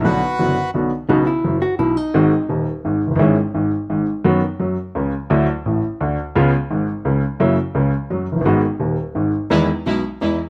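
Close, detailed microphones and light reverb give this short tango excerpt an intimate, present sound. In a sultry, melancholic mood, it moves at 171 BPM in 3/4 with a rubato feel, centred on B major, and wanders through colourful harmony such as G#7, Dadd9 and a closing Emaj7. A clear, woody upright piano carries the accompaniment throughout; it is slightly detuned, with long sustain, and sits up front. A reedy, dry bandoneon states the melody only in the opening moments. A dark, clean hollow-body jazz guitar then adds a compressed second line from 1.1 s. Near the end, at 9.5 s, a bright chamber string section cuts in with focused, bowed stabs full of vibrato.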